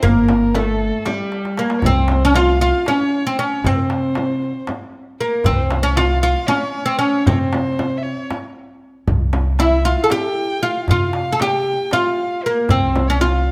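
Longing and soulful, this short excerpt of a Turkish makam ensemble moves in 7/8 at 232 eighth-note beats per minute in C makam hicaz, tuned to A4 = 445 Hz. A bright, woody, fretless oud with double strings carries the melody up front, while a dark, smooth bowed violin with vibrato adds a second line above a plucked upright bass. A crisp, deep metal-shelled darbuka, compressed and saturated, drives the rhythm with a small, bright frame drum in the background, and after a drum fill from 1.3 to 1.9 seconds the music settles into a new section, all in a moderate recital hall reverb.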